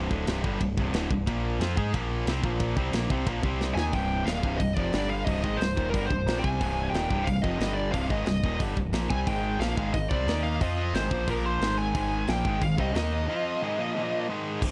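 A studio room sound with light reverb frames this heavy, aggressive metal passage cut from a longer piece, driving in C minor at 180 BPM in a straight 4/4. An up-front overdriven electric guitar and a second high-gain guitar further back play riffs over growling, amped electric bass and a tight acoustic kit with bright cymbals. A drum fill at 3.6 seconds ushers in a dark, distorted lead guitar melody at 3.7 seconds, as power chords on C, G, Ab, Eb, F and Bb carry the music to a break at 13.3 seconds.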